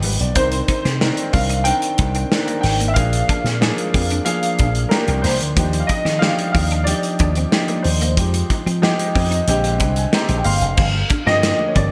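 Polished 1980s jazz-funk pop at 92 BPM in Eb major, glossy and upbeat, with a punchy, amped slap bass through an envelope filter and an up-front studio drum kit with gated reverb and a tight kick driving under a baby grand piano accompaniment bathed in lush chorus. A natural-toned grand piano carries the melody from 0.4 s with analog chorus, adding a fill from 8.8 s, while a very quiet, twangy clean electric guitar picks a riff and ringing, high-tuned congas slip in at 10.8 s. Chords move through Cm9, Bb7, Ebmaj9, Fm9 and Bb13 to Gm7, all set in a bright digital 1980s-style mix with moderate plate reverb in this excerpt cut from a longer piece.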